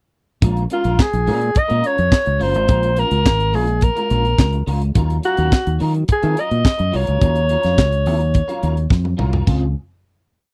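Glamorous and danceable, this short disco piece rides a straight four-on-the-floor groove in a dry, close 1970s-style studio sound. The tight funk kit sits up front, with a tight kick, a high-tuned snare layered with handclaps, sixteenth-note hi-hats, crash and toms. A drum fill at 8.9 seconds leads into a final chord at 9.5 seconds. A dark, round fingered electric bass plays a syncopated disco line with muted ghost notes. Beneath it, an electric guitar, slightly broken-up and compressed with an ensemble chorus, adds choppy, picked sixteenth-note chords low in the mix. A breathy alto saxophone enters at 0.7 seconds with a vintage, jazz-style subtone solo of motif-based call phrases and scooped notes, over harmony that moves from Bbm7 to Ebm9 before settling on Dbmaj7.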